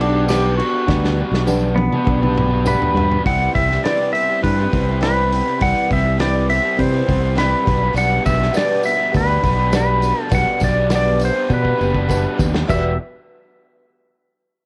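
A straight 4/4 pulse at 102 BPM drives this dusty, reflective slice of folk rock and heartland rock, carried by a natural country drum kit with a punchy kick, medium-tuned snare, hi-hat, crash and toms working through fills, and anchored by an up-front fingered electric bass, direct and amped. A bright, clean, compressed pedal steel guitar leads the melody with fingerpicked slide lines and volume swells, while a double-tracked, crunchy overdriven guitar plays a picked riff. In the background sit a woody, old-stringed ladder-braced acoustic guitar, a reedy, worn, slightly out-of-tune electric piano heard through its built-in speakers, and a jingly tambourine that enters at 0.3 seconds and returns at 8.0 seconds, as the harmony moves from Gmaj7/B to Cmaj7 and back before landing on Emadd9, all captured in a small room on a home cassette recording.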